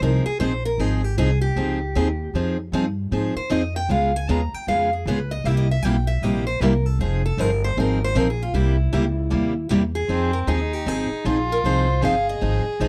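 A bright, boxy parlour-style steel-string guitar opens this bittersweet excerpt of acoustic string swing in the jazz manouche tradition. It takes a picked solo line over a second, concert-bodied steel-string guitar that picks the accompaniment, and a woody, thumpy upright bass with gut strings plucked up front. The trio swings at 155 BPM in 4/4 and F minor, moving through Fm9, Db7, C7 and a tense C7#9 before returning to Fm9. At 10.1 seconds the solo passage gives way to a new section as a single violin enters with a second line, its period-style tone nasal and reedy with an airy bow. Small room ambience frames a dry, close sound in the manner of a 1970s studio, with finger squeaks audible on both guitars.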